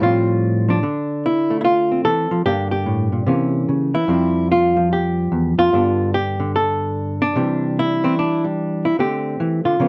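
A clean, fingered hollow-body electric jazz guitar opens the recording alone and carries this short solo jazz piece for its full 9.9 seconds. The mood is sophisticated and swinging, with a brisk 4/4 pulse and a moderate swing on the eighth notes. The guitar sits up front with a dark, compressed tone, moving through rich harmony that passes from F69/A and Dm9 to C7b9, G9 and Cadd9 before landing on a bare D5. Its range runs from a low E2 up to A4, giving the solo both bass weight and singing upper lines. Moderate studio reverb adds a modest sense of room, and the overall production is dusky and warm, fitting a fragment cut from a longer performance.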